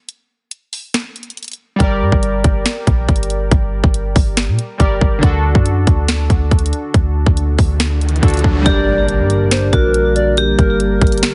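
This dark, brooding trap excerpt moves at 140 BPM in a half-time feel in G harmonic minor, heavily compressed into a radio-like sound with digital ambience. A produced electronic trap kit opens alone, up front with a hard-clipped kick, sharp snare and bright hats, before glassy digital keys with chorus and a filter sweep and a deep, boomy 808-style bass arrive at 1.8 seconds over a move from Gm to D. A background riser builds from 7.5 seconds into an electronic impact that marks the shift to a new section at 8.7 seconds, returning to Gm. There a ringing, metallic vibraphone struck with hard mallets carries the melody through a low-pass filter and digital delay, its slow motor vibrato sitting in a boxy small room. Alongside it, a hollow, woody clarinet-like synth lead adds a soft second line with vibrato, chorus and delay, while a moody analog pad of detuned square and sawtooth waves with a moving notch holds sustained chords beneath.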